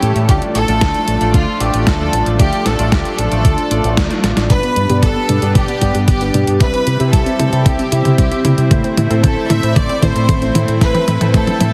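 A straight pulse from a thumpy, tape-tinged electronic kick entering at 0.3 seconds and a detuned 8-bit drum machine of hi-hat, snare and toms drives this melodramatic, nostalgic italo disco fragment, where a clear, earthy studio violin section with light vibrato and tape echo carries the melody over a fingered electric bass with envelope filter and tube saturation, a thick, bright chorused unison pad, and glossy retro polysynth stabs that take on a filter sweep when a drum fill and a very quiet, warbling unison pluck arpeggio arrive at 4.5 seconds, all wrapped in plate reverb and a heavily compressed radio sound.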